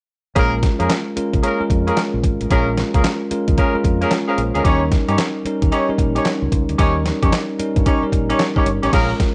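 A punchy, confident new jack swing groove at 112 BPM opens at 0.4 s with a gritty, pitched-down sampler-style drum kit of thumpy kick, snare, hi-hat, handclaps and crash alongside a bell-like tine electric piano, a mellow horn section stabbing in octaves with light vibrato, and a round, dark fingered electric bass, swinging over Bbm7 and Eb7 in Bb dorian with a tape-worn, lo-fi home cassette sound and light reverb in this short cut from a longer piece.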